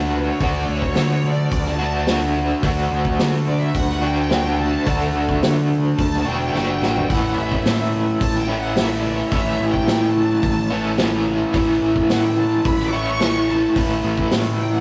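A straight 4/4 pulse at 108 BPM drives this trippy, hypnotic psychedelic rock excerpt in A mixolydian, cut from a longer piece. A vintage acoustic drum kit, with punchy kick, medium-tuned snare, hi-hat and toms and a rolled-off top, enters at 0.4 seconds and plays a fill from 6.5 seconds before the harmony moves from D to A at 7.1 seconds. Up front, a crunchy, bright, double-tracked overdriven guitar plays a picked riff with tremolo, while an amped, round overdriven fingered electric bass holds down the low end. A clear, focused studio string section takes a solo as a bowed ensemble, playing sustained chords with vibrato, and very quiet congas with a thin skin add a light percussive layer. The whole sounds like a rough rehearsal-room recording, set in a moderate stone room reverb.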